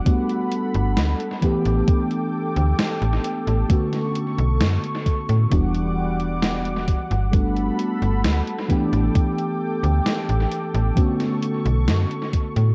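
Nostalgic and woozy, this slow 66 BPM vaporwave excerpt drifts through Gmaj9, A7sus4, Bm9 and Em9 on a mellow, round FM electric piano with analog chorus, cassette tape and tape echo, backed by a lush, nasal, detuned sawtooth pad, a thumpy up-front electronic kick, a gated 80s digital drum machine whose hi-hat and snare carry gated reverb and tape echo, and a snappy, metallic slap-like FM bass entering at 0.7 seconds, all set in an echo-heavy, cassette-tinged mix with light reverb.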